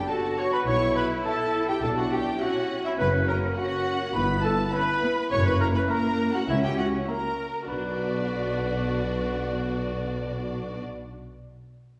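A bell-like celesta melody opens this sneaky, mischievous film cue in B minor at 103 BPM, joined at once by a roomy clarinet second line, two lush violin sections (one on a softer melody), a clear, focused viola section in the background, a tight French horn section holding sustained chords and a cello section with expressive portamento, while woody double basses and a tuba enter on the bass at 0.7 seconds, all set in a wet scoring-stage reverb heard from further back in the room.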